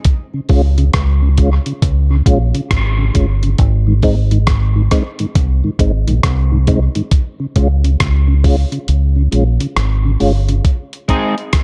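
A dark, warm mix bathed in digital ambience sets a spacious, hazy mood for this slow dub reggae cut, moving at 68 BPM with a swung sixteenth feel over chords that shift between Db and Ab. A gritty, compressed sampler-style drum kit with a thumpy kick, hi-hat and rim click sits up front beside a deep, round fingered electric bass, while a mellow, clean tonewheel organ colored by chorus vibrato and a slow rotary speaker fills in the harmony. The kick drops out at 8.9 seconds, and near the close, at 11.1 seconds, an electric guitar at the edge of break-up briefly appears through analog chorus.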